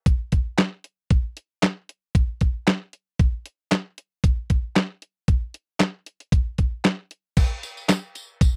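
Funk groove, danceable and slick, built on a detuned 8-bit digital drum machine with a thumpy kick, medium-tuned snare, handclaps, hi-hat and crash cymbal sitting tape-warm and up front in a dry, close 1970s-style studio sound, joined at 7.4 seconds by a jingly acoustic tambourine for the closing stretch of this short excerpt cut from a longer piece.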